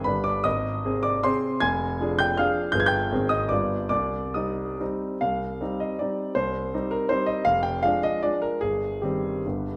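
Dotted rhythms in rubato 3/4 drive this nostalgic, capricious romantic dance in C minor, a short cut from a longer piece for solo concert grand piano, smooth and vintage with deep bass, sitting up front in a wet recital hall at a tempo that drifts between 131 and 172 BPM, its phrase heard twice with the second pass at 5.2 seconds, and its harmony moving through Ab, a diminished chord over F and a dominant seventh to settle on C minor.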